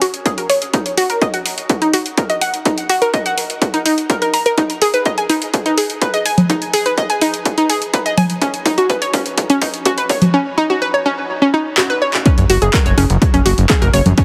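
A round, bright analog pluck spins hypnotic arpeggios through chorus, tape echo, ring modulation and sidechain pumping, joined from the start by an overdriven analog drum machine of congas, handclaps, hi-hat and rim click, with a punchy electronic kick arriving at 0.3 seconds. This driving melodic techno builds through shifting chords and drum fills, with both drum parts up front and carrying the ambience of a large room. At 12.3 seconds the drop hits, and a fat, detuned sawtooth bass enters at 12.4 seconds with its own sidechain pumping, all under light reverb and a heavily compressed, radio-like sound in this short section cut from a longer track.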